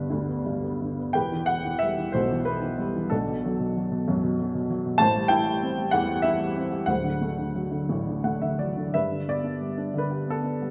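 A worn, woody, slightly detuned upright piano sits up front in this brief, sunny passage of lyrical classical solo piano in a rubato 3/4, moving through G, Em, Bm7, Am7 and D7 before a fill from 7.9 to 9.0 seconds brings it home to G, all carried by a moderate recital-hall reverb.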